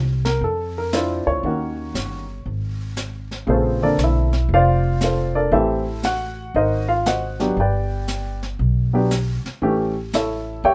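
Lightly reverberant and intimate, this brief cut from a longer jazz piano trio piece swings at 117 BPM with a cool, late-night mood: a woody pizzicato upright bass sits up front from 0.0 seconds, a dark, mellow baby grand piano with audible action noise carries the melody over chords moving from Dm9 through Bbmaj9 to A7, and an airy, polished brush kit with a high-tuned snare and hi-hat sits lower in the mix from 0.3 seconds.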